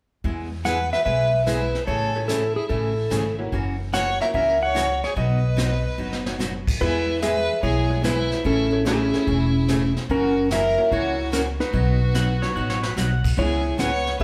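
A playful, down-home western swing excerpt opens at 0.2 seconds with bright, old-stringed picked acoustic guitar, a woody, thumpy pizzicato upright bass on gut strings, and a vintage brush kit with a tight kick and rolled-off top, all rolling along in a swung 4/4. Almost at once a clear, focused fiddle with light vibrato enters on a second line, and a clean, compressed lap steel follows to take the melody up front with slide and volume swells, while a jangly, metallic tack piano slips in behind them at 2.2 seconds. The band sounds live in one room under a wet studio reverb, with drum fills marking the turns, and a twangy, fingerpicked pedal steel adds a brief bright second line at 12.2 seconds as the chords move toward a closing C#m7.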